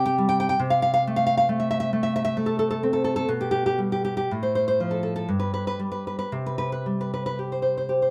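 Tender and nostalgic, this brief cut from a longer romantic piece for solo classical guitar unfolds in C major at a rubato 55-69 BPM in 3/4, its dark, deep fingerpicked nylon-string guitar sitting up front under close, detailed microphones with light reverb as it moves from C5 and C6 voicings through G/B and F/A before a brief passage outside any chord at 5.3 seconds and a return to C5 at 6.3 seconds.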